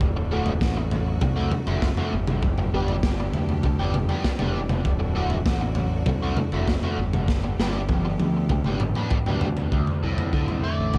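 A straight 4/4 groove at 99 BPM drives this short psychedelic rock clip in D major, its gritty, saturated breakbeat kit sitting up front with a tight kick, toms and a medium-tuned snare, joined by a punchy fuzz bass and a biting overdriven guitar riff, double-tracked and coated in flanger and dub echo, as the chords move between D and G. A bright, lush string section hovers distantly and very quietly behind them with vibrato until 9.7 seconds, while a drum fill runs from 7.3 seconds into a new section. A dark octave-fuzz lead guitar enters on a single high D at 10.6 seconds, and the echo-heavy mix in a small room gives the whole passage a trippy, kaleidoscopic feel.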